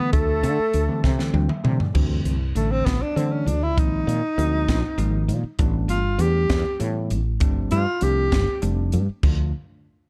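A mellow tenor saxophone with vibrato and scooped notes leads this nocturnal, funky jazz fusion excerpt at 66 BPM in 6/8, taking a smooth-topped solo from 2.0 seconds over a sus4 chord progression. A pure, very quiet concert flute adds a brief second line at the opening, while a bell-like tine electric piano and a crisp drum kit with a high-tuned snare and punchy kick both play fills from 1.0 seconds. A woody, growly fretless bass sits up front with the drums, all in a dark, dry production.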